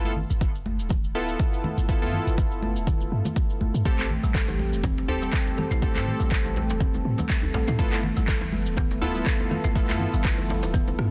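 A dense, heavily limited modern mix with studio reverb frames this spiritual, earthy afro house passage, cut from a longer piece. From the start, round, detuned sawtooth keys play stabs with chorus, dub echo and sidechain pumping over a deep, boomy 808-style bass whose mellow sine tone carries a noise layer and pumps in the same way. Close, dry congas struck with hard hands sit in the background beside tape-tinged electronic shaker, handclaps and rim click, while a layered, overdriven electronic kick arrives at 0.4 seconds. At 3.9 seconds a smooth, dark sawtooth-and-triangle pad with a sub octave and slow attack swells in behind the mix, joined by a woody, hollow kalimba playing short thumbnail-plucked arpeggios through dub echo. A deep djembe, also played with hard hands, adds an earthy undertow in the background from 4.5 seconds as the harmony moves from G13 to Am7 and back to G13, all under a lightly swung sixteenth-note feel.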